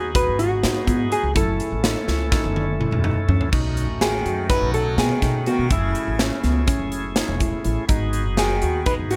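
A hollow-body jazz guitar opens this progressive instrumental cut from a longer piece, carrying a dark, clean, fingered melody touched with tape echo, joined at once by a reedy tonewheel organ with key click and slow rotary speaker, a worn, slightly out-of-tune tine electric piano playing arpeggios, and a woody pizzicato upright bass. A big rock drum kit comes in at 0.1 seconds, up front in a big room, with a punchy kick, medium-tuned snare, toms, hi-hat and bright crashes, and it plays a fill that ends as the second section begins at 3.5 seconds. The groove runs in a straight 9/8 at 248 eighth-note beats per minute in F# dorian, moving through G#m7 and F#m7 before shifting to B7 and back. At 4.0 seconds a plectrum-plucked sitar adds a low second line, its buzzing sympathetic strings giving a shimmering edge beneath the guitar. The mood is driving and tense, with light reverb around the band.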